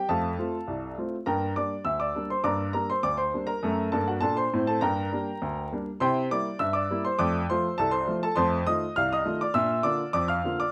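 A worn, up-front baby grand piano opens this jaunty, lively ragtime piece on its own. It plays in F major at 102 BPM in a straight 2/4, ranging from C2 to F6 with long sustain, tuned to A4 = 439 Hz. The chords move from F through Gm, D7/F#, C7 and F7 before landing on Bb at 9.5 seconds, as this short cut from a longer piece ends. A moderate club reverb and a layer of vinyl crackle give it a present, lived-in sound.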